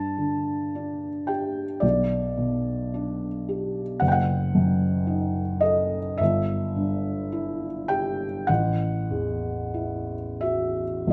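Yearning and mournful, this short excerpt from a longer romantic nocturne unfolds in slow, rubato time on a solo felt-muted upright piano, its hushed, intimate tone sitting up front while reaching from a dark low F#1 to A5. Thick felt softens every note into a mellow, velvety murmur, and a lush recital hall reverb lets the chords, from G5 through G/B, F#m6 and Em/G to a closing F#m7/A, bloom and linger across the 11.1 seconds.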